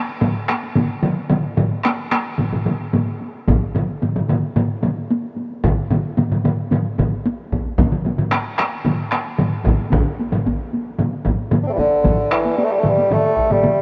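A straight 4/4 pulse at 112 BPM drives this Japanese traditional taiko drum ensemble forward, gathering speed throughout this short passage cut from a longer piece, and the mood is driving and ceremonial. Three taiko ensemble parts struck with hard sticks open almost at once: one close and dry, another compressed and saturated, and a third with a vintage, band-limited colour placed up front. A fourth taiko ensemble, struck with heavy sticks and ringing in a live room, joins at 3.5 s and adds the loudest drum weight. At 11.6 s a mellow solo bassoon in classical style takes up the melody between D3 and D4, with light vibrato and a roomy quality, just ahead of a brief new section that begins at 12.0 s near the close. A huge ambient reverb places the whole ensemble further back in the room, lending the drums a grand, resonant scale.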